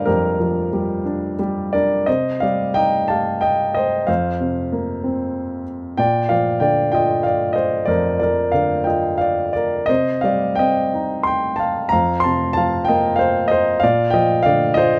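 Classical solo piano in a lyrical, relaxed vein, this sunny excerpt unfolds in triple time with a flexible rubato feel. A single grand piano, intimate and up front with audible action noise, plays alone across all 15.0 seconds, ranging from F2 to C6 within a light reverb. Its harmony turns gently through sixth, added-ninth and suspended chords, settling back on a Bb6 sonority at 13.8 seconds.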